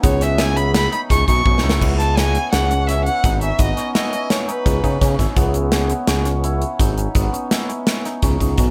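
Tense and brooding, this progressive instrumental excerpt moves in a straight 5/4 at 168 BPM in C# minor, opening with a bowed solo violin, smooth and vibrato-laden, over shimmering, ringing cimbalom arpeggios with delay, an up-front gated 80s kit and a sawtooth-and-triangle synth bass. A drum fill at 1.5 seconds leads into a C#m7 passage, where the kit, with its punchy kick, medium-tuned snare and bright cymbals in a big, airy room, plays with the synth bass, which is colored by ring modulation and vibrato. The violin stops at 5.2 seconds while cimbalom, bass and drums carry on under light reverb.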